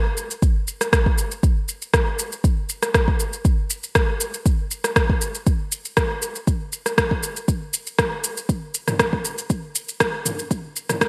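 An overdriven, layered deep house drum kit of rim click, shaker and toms with gated reverb opens this warm, hypnotic swung house fragment at 0.2 s, joined up front at 0.4 s by a deep electronic kick as a filter sweep drives a build-up through to 11.1 s, all set in light reverb with a bright, high-passed 1980s-style digital sheen.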